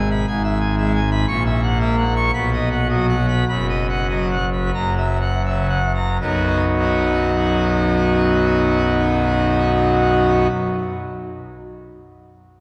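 Jubilant and brilliant, this classical organ toccata in B major, a fragment of a longer piece, has a solo pipe organ on full organ with bright mixtures and romantic voicing, sounding majestic and up front as it spans from deep pedal notes to high treble. In straight 4/4 at 75-120 BPM, it slows from 0.3 to 6.2 seconds through a broad cadence that arrives on B at 6.2 seconds, then the organ carries on until 10.5 seconds. A long, wet church reverb surrounds the playing, and the worn cassette-tape sound adds a warbly pitch drift to a tuning of A4 = 436 Hz.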